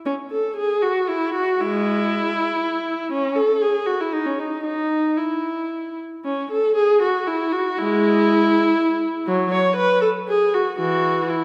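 A classical, baroque-style suite movement for unaccompanied viola in 3/4 at 117 BPM, this radiant, dance-like excerpt in E major (tuned to A4 = 439 Hz) features a single bowed viola, rich and focused with a smooth top and vibrato, playing with rubato across two statements of the same section from 0.1 s to 11.4 s, set up front yet heard from further back in a recital hall whose reverb lingers for 1.9 seconds.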